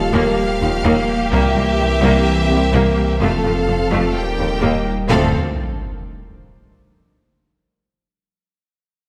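Bathed in a wet concert-hall reverb, this brooding, futuristic excerpt from a hybrid orchestral and electronic film score moves at 127 BPM in D minor, with a lush bowed violin section carrying a focused vibrato melody over a distant, intense second violin line, an airy, breathy pad with chorus, a mellow French horn section holding chords, a deep, round sine sub bass, and violas, cellos and double basses in the background, until the harmony settles on Dm7 at 5.1 seconds and a huge, dark sub drop lands from 5.2 seconds.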